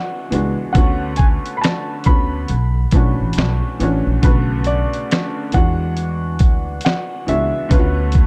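A dark, hazy mix sits in a small room with light reverb, giving this short cut from a longer piece a melancholic feel. It is lo-fi hip hop at 69 BPM in 4/4, with a 61% swing on the sixteenths, in B dorian and tuned to A4 = 438 Hz. From the start, a soft, felt-muted upright piano carries an intimate, mellow melody between B4 and B5, softened further by a low-pass filter. Beneath it, a bright, slightly detuned upright piano with a worn, brilliant tone plays chords from E9 to Bm7/D and Bm11, colored by cassette tape and a low-pass filter. At 0.3 seconds, a woody pizzicato upright bass with steel strings enters up front, joined by a gritty, compressed sampler-style kit with a thumpy kick, medium-tuned snare, hi-hat and finger snaps, carrying vintage 12-bit sampler grit. The same section then repeats through to 8.3 seconds, cycling through Bm7, E9 and Bm7/D.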